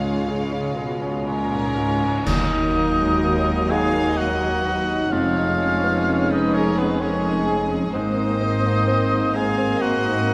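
In a slow, rubato 3/4 at 63 BPM, this sorrowful, longing cinematic film score excerpt in Eb minor opens on a Db chord with a very quiet, dark violin melody played sul tasto with light vibrato, a warm second violin line, a bright, brilliant concert grand piano in the background, hushed woody violas, and rich cellos with a pure, floating tone alongside dark, woody double basses grounding the low end. At 1.3 seconds a close-miked cor anglais comes up front beside a vintage-toned clarinet, and at 2.3 seconds the music turns to Ebm as a distant, mellow French horn section adds sustained chords and dark clash cymbals with concert bass drum strike an accent, the percussion falling away by 4.1 seconds. The harmony then moves through Dbadd9/F to Abadd9, all within a moderate scoring-stage reverb.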